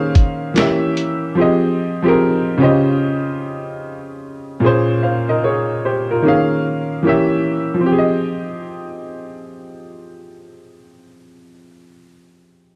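A clear, woody upright piano opens this reflective, hazy lo-fi hip hop excerpt in F minor, moving at 74 BPM in 4/4 with a swung sixteenth-note feel. A sampler-style drum kit of finger snaps, hi-hat, thumpy kick and medium-tuned snare joins at 0.2 seconds, sounding muffled, compressed and tape-warm, as if re-recorded in a small room, but it drops away by 1.2 seconds, leaving the piano to carry on. The piano stays up front with a smooth, vintage tone and short sustain, colored by cassette tape and a low-pass filter as it spans from Bb2 to F5. Its harmony drifts through jazzy extended chords such as Eb9sus4, Edim7, Fm7, Dbmaj9#11 and Bbm9, then a new section arrives at 7.9 seconds, landing back on Fm7. Moderate studio reverb and a dark, warm production give the whole excerpt a dusky haze.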